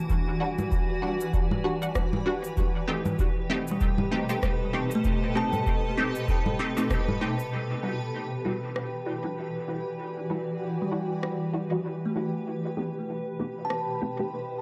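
A spacious, echo-heavy mix with moderate spring reverb opens this deep ambient dub excerpt, where an up-front granular cloud pad holds blurred, slowly evolving chords. A tape-warm analog kick sits forward until 7.0 seconds, beneath overdriven electronic cabasa, congas and rim click soaked in dub echo. Muted, detuned chord stabs with phaser and chorus recur throughout, and a woody, airy kalimba first plays arpeggios at 3.7 seconds; after a band accent, both the stabs and the kalimba are swept by a filter from 7.5 seconds on.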